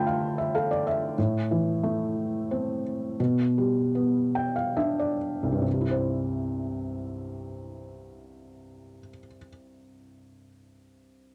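Tender and heartfelt, this short excerpt of a folk piece in 3/4 features a felt-muted upright piano carrying the melody across a broad range, its soft, mellow tone sitting up front with audible action noise and a cassette tape character. Piano fills open the piece and return between 3.9 and 5.7 seconds while the pace slows, the harmony moving from Dm through Am and G/B before settling on C as the second section begins at 5.7 seconds. The intimate home recording has the damp closeness of a small booth.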